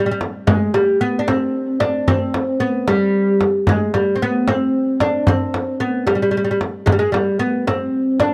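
A plucked oud opens this short cut from a longer Arabic maqam ensemble piece, its fretless, double-strung voice sounding mellow and woody as it carries the melody between G3 and D4. A fraction later, at 0.2 seconds, a frame drum joins, played with hard hands and given a compressed, saturated edge. The music moves in 6/8 at 75 beats per minute, counted in dotted quarters, with a straight feel and tuning pitched to A4 = 443 Hz. Both instruments sit up front in a dry, close, 1970s-style studio sound with a small room ambience, and the deep oud holds slightly more presence than the drum. The mood is soulful and melancholic, and both parts play together through to the end at 8.3 seconds.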